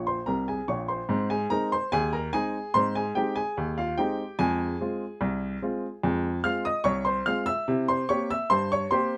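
In a straight 2/4 at 73 BPM, this cheerful, jaunty ragtime fragment in Ab major, cut from a longer piece, features a solo upright piano ranging from Bb1 to F6. The woody, polished piano sits up front with a clear, short-sustained tone, opening with a brief fill over Db5 before settling at 1.1 seconds into a passage moving through Ab, Fm and C7. Light reverb and a dark production frame the playing.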